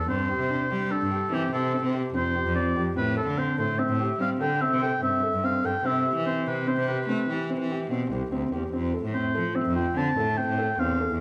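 Set in a straight 7/4 at 146 BPM, this shimmering, restless piece of contemporary chamber music in F lydian is an 11.2-second cut from a longer work. A solo oboe with light vibrato and a smooth, classical-style top carries the melody up front, over soft, intimate arpeggios from a felt-muted upright piano and a clear, bowed cello bass line played close by one player. The chords move from G7sus4 through Am7 and Cmaj7 to F, and the whole trio sits in the wet reverb of a recital hall.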